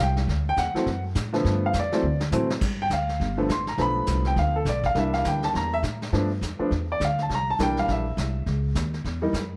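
A playful, swinging jazz piano trio moves at a brisk clip in this short excerpt cut from a longer piece. The clear upright piano sits up front and carries the melody as a solo across the whole passage, its woody, natural tone lifted by a plate reverb. Beneath it, the pizzicato upright bass has a dark, thumpy gut-string sound and stays close in the mix. The vintage brush drum kit enters at 0.2 seconds with a medium-tuned snare, punchy kick, hi-hat, toms and crash cymbal, its rolled-off top giving it a mellow studio-room character. A drum fill from 2.0 to 2.6 seconds ushers in a second pass through the tune, with the harmony moving among dominant chords like G7 and C7 before landing on C#m near the end.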